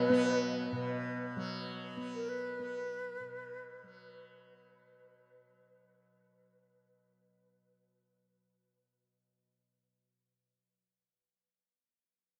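A huge, wet reverb with a long tail fills a vast, echoing space, and the grain of cassette tape adds age to this short cut from a longer meditative world piece in free time. A bright, buzzing tanpura sits up front, its softly plucked drone shimmering through to 10.6 seconds. Above it, a breathy, hollow silver concert flute, close-miked and touched with vibrato and delay, plays a tongued melody in a narrow register until 4.3 seconds. Barely audible crotales struck with brass mallets add a ringing, bell-like texture, vintage and band-limited, until 3.0 seconds. The passage fades out across its first 4.5 seconds, leaving a peaceful, spacious calm.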